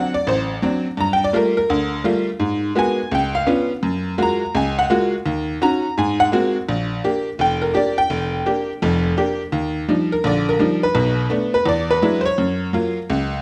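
Sophisticated and warm, this short solo jazz excerpt swings briskly at 168 BPM in 4/4, with a lilting eighth-note feel. A lone tack piano carries everything, its metallic, jangly attack and short sustain giving the playing a vintage, honky-tonk character while still sounding smooth and bright. Sitting up front in a large studio, the piano is surrounded by a moderate reverb that lends the room some depth. The harmony moves through rich, colorful chords, from D7 and Gm9 through Db7b9 and Gbmaj9 to a Bb6, before a second passage begins at 9.5 seconds on Ebmaj9. The fragment closes on Gbmaj7 at 13.4 seconds, cut from a longer performance.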